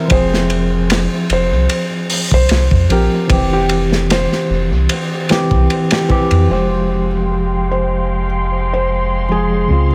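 Trip hop at 75 BPM in F harmonic minor, this dark, smoky excerpt sets a soft, muted felt piano melody with audible action noise over a clean tine electric piano with harmonic tremolo, both trailing tape echo. A deep, round dub sub bass sits up front beside a gritty, saturated breakbeat kit with dark cymbals and a tight kick, while a breathy, wind-like noise texture hovers very quietly. At 6.5 seconds the drums and the wind texture drop out, and a lush, bowed violin section enters on sustained chords, with a filter sweep running through the rest of this echo-heavy mix.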